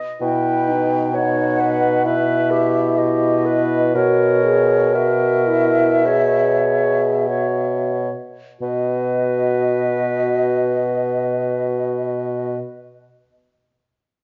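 An airy, hollow concert flute sings a tender, lyrical melody with vibrato over a clear French horn, a close-miked clarinet and a warm, up-front bassoon holding a low B in this slow romantic wind quintet movement in B major, moving rubato at 42-67 BPM, slowing through its opening 8.6 seconds as the harmony shifts from Em/B to F#7/B before settling on B, all heard through a moderate recital-hall reverb and the muffled, warbling pitch drift of worn old cassette tape.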